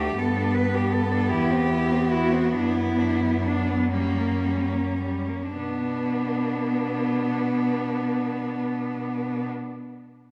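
Classical and lyrical, this short excerpt for a rich cello ensemble feels yearning and elegiac in a rubato 6/8, slowing through its first 5.6 seconds in a moderate scoring-stage reverb as four bowed cellos with vibrato share the texture: a focused melody that sounds distant yet up front, an expressive second line with soft attack and portamento, a focused accompanying part, and a smooth, even bass.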